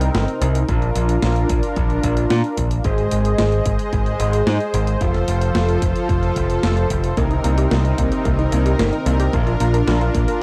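Synthwave in C minor at 111 BPM with a cinematic, moody air, cut from a longer piece and recorded at home on cassette in a moderate reverb, where a mellow, detuned supersaw holds up-front sustained chords through Cm7, Bb, Ab and F while a bright, punchy picked electric bass pumps against the sidechain beside it. A sampler-style 12-bit drum machine supplies tape-softened hi-hat and a medium-tuned snare, a layered electronic kick joins at 0.7 s, and at 7.2 s a round analog pluck with a sub octave and a filter sweep adds background arpeggios through chorus and tape echo.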